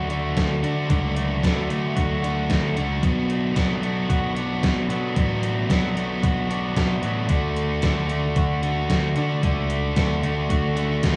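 Indie rock with a wistful, carefree mood, this short cut from a longer piece pairs a dark, biting overdriven guitar riff up front with a bright, compressed clean electric guitar in the background, its riff touched by subtle chorus and cassette tape character, while a punchy, amped picked bass anchors the low end. An up-front, sampler-style 80s digital drum machine enters at 0.1 seconds with a thumpy kick, hi-hat and a gated reverb snare, its sound overdriven and re-recorded in a small room. The chords move from Dmaj7 to Bm7 and back. The whole has the intimate feel of a home recording on cassette with light reverb and small room ambience.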